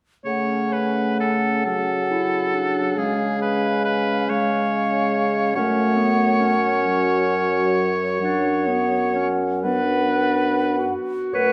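A bright, present oboe sounds first at 0.2 s, joined a moment later by the full wind quintet in a slow, solemn and yearning classical movement in F# minor, played in a rubato 6/8 at roughly 32-48 dotted-quarter beats per minute. An airy, hollow silver flute carries the high melody with vibrato, the oboe sings a second line, and a clear, smooth clarinet and a mellow, vintage-toned French horn fill the accompaniment above a dark, distant bassoon bass. The harmony moves from F#m over C# to C#7, then F#m and Bm over F#, all set in a recital hall reverb.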